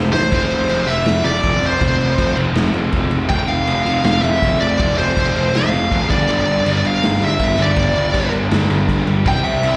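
A short drum fill kicks off this rowdy, energetic punk rock excerpt, cut from a longer piece, as the guitars and bass come in together at the start. The raw garage drum kit, with its punchy kick, medium-tuned snare and crash cymbal, sounds gritty and saturated with a rolled-off top, and it settles into a half-time feel from 0.3 seconds. Underneath, a growly picked bass with fuzz and overdrive sits alongside two double-tracked guitars playing the riff: a dark, very quiet fuzz guitar, and a scooped, overdriven one in the background touched with slapback echo. Up front, a high-gain lead guitar carries the melody in a high register, its distortion trailed by slapback echo and digital delay. The harmony moves from F5 to G5 at 6.1 seconds and lands on C near the end. It all comes across as a live gig heard through the venue's PA, wrapped in recital hall reverb.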